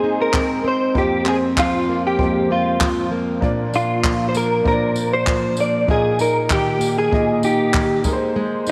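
A clean, direct-recorded electric guitar carries the melody from the first moment, picked and compressed with an ensemble chorus on its tone, sitting up front alongside a fingerpicked steel-string acoustic guitar. That plugged-in jumbo acoustic is dark and full-bodied, and a baby grand piano sits in the background with an intimate, natural sound and audible action noise. A jazz drum kit played with brushes joins at 0.3 seconds, adding handclaps, tambourine and a boomy kick from a studio room. The mood of this acoustic pop fragment is easy-going and heartfelt, in a straight 4/4, with the harmony moving from Abadd9 through Fsus4, Bb and Ebsus2/Bb before returning to Abadd9. A moderate echo chamber reverb gives the whole blend a spacious glow, and the passage ends at 8.7 seconds as a cut from a longer piece.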